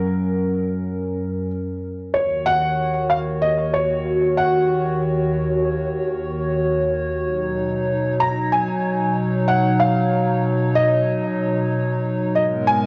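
Glitchy and cerebral, this IDM excerpt in a straight 4/4 feel pairs a soft, felt-muted upright piano carrying the melody with a warbling, detuned tape-like pad holding sustained chords, both sounding throughout its 12.9 seconds. The piano is intimate and short-sustained, roughened by vintage 12-bit sampler grit, cassette tape and tape echo, while the pad's slow-attack, wave-folded tone drifts nostalgically through chorus and its own reverb. The harmony moves from F# to D#m7 at 2.2 seconds and Badd9 at 7.3 seconds, all set in a moderate studio reverb with the lo-fi haze of a home cassette recording.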